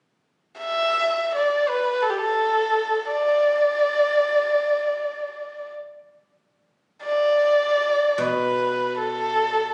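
An intimate, boxy erhu opens the melody at 0.6 seconds in free time, its vibrato, portamento and airy bow sitting close and up front in this festive, graceful Chinese chamber excerpt in D zhi mode, until a ringing, silvery guzheng played with fingerpicks enters softly beneath it at 8.2 seconds, the performance captured on a phone in a recital hall with moderate reverb and compression.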